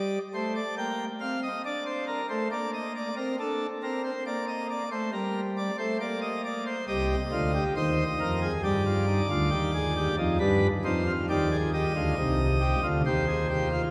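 Driving and serious, this baroque-style three-part fugue at 68 BPM in 4/4 is a 13.9-second excerpt of a pipe organ playing alone on a full, up-front principal chorus with baroque voicing, ranging from C2 to G5 over G minor and C minor harmony and ringing through a long, wet cathedral reverb.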